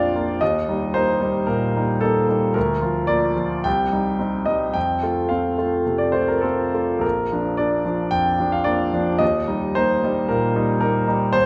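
A clear, natural-toned grand piano sits up front as the sole voice in this lyrical romantic character piece, its long sustain ringing across a range from Bb1 to G5 and bathed in the wet reverb of a recital hall. At 111 BPM in 4/4 with a flexible rubato feel and tuned to A4 = 441 Hz, the warm passage moves through Eb, Bb/D, Cm, F and Bb before settling back on Eb at 9.2 seconds. This 11.5-second excerpt is cut from a longer work.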